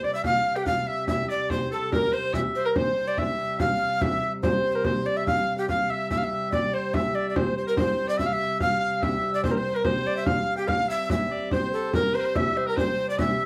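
In a straight 3/4 at 144 BPM, this rustic, ancient-sounding medieval dance in C mixolydian sets a breathy, chiffing, unsteady bass recorder with vibrato up front on the melody, a bright, distant shawm on a second line, a reedy pedal harmonium drone and a deep frame drum played with soft hands, the four playing together in a wet room until the same strain returns at 8.2 s in this short cut from a longer piece.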